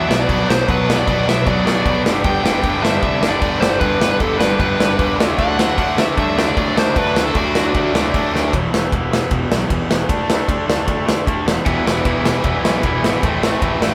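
A nasal lead guitar with a parked wah carries an overdriven melody over a cranked stack guitar riff, a tight, bright distorted guitar riff and a fuzz-laden picked bass in the background, as a punchy, up-front big rock drum kit kicks in almost at once in this aggressive, urgent 153 BPM punk rock excerpt in E minor, with the lead stopping at 7.9 seconds and the tight guitar dropping out at 8.5 seconds after a drum fill before returning at 11.7 seconds, heard as a band playing live in one room with light reverb.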